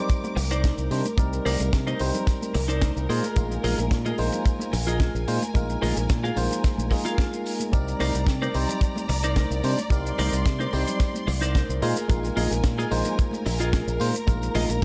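Close and natural, with the feel of a small studio room, this short nu-disco excerpt grooves along at 110 BPM in a straight 4/4, in C minor with tuning at A4 = 441 Hz. An up-front acoustic kick anchors the beat, joined by a compact funk kit of hi-hat, shaker and a high-tuned snare, while very quiet, vintage-toned tambourine, bongos and congas sit low in the mix. From 0.4 s a bright, punchy fingered electric bass with an envelope filter drives the low end, and a twangy, compressed clean electric guitar plays a picked riff through analog chorus. A tine electric piano heard through its built-in speakers carries the accompaniment with sidechain pumping and tape echo, and a lush, bowed symphonic string section holds smooth, vibrato-laden chords above, also sidechain pumped. The harmony sways between Cm9 and Bb7sus4, giving the piece a groovy, sleek mood.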